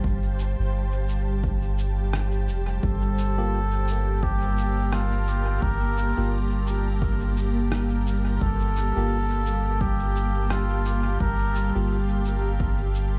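A hazy, spacious recording with light digital ambience, vinyl crackle and an echo-heavy mix opens this ambient dub fragment, cut from a longer piece and set in a swung 4/4. A detuned, organ-like pad holds full-bodied, calm chords with ensemble chorus and its own reverb, while a deep, round sub bass sits up front with tube saturation. An overdriven, punchy electronic kick stays in the background under studio reverb, joined by a muffled, pitched-down cabasa and rim click treated with dub echo. A reversed, swelling texture drifts dreamily in the background until 2.9 seconds. At 2.8 seconds the harmony moves from Fadd9/G to Gm7 as a cup-muted trumpet takes a soft, veiled solo melody in a classical style, trailed by dub echo. From 3.4 seconds a bell-like tine electric piano adds clean stabs in the background, also echoing.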